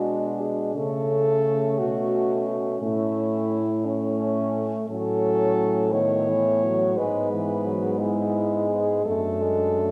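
Classical and lyrical, this serene excerpt for horn quartet moves in a slow, rubato 6/8 in A major, the four French horns playing together throughout its 9.9 seconds under the generous bloom of a church or concert hall. Up front, the melody horn carries a smooth top, while a second horn with light vibrato sits farther back on an inner line. Below them, one horn colored with a vintage, band-limited tone fills out the accompaniment, and a mellow bass horn, also forward and lightly vibrant, anchors the harmony as it passes from E7/B through A and B7/A toward D/F#.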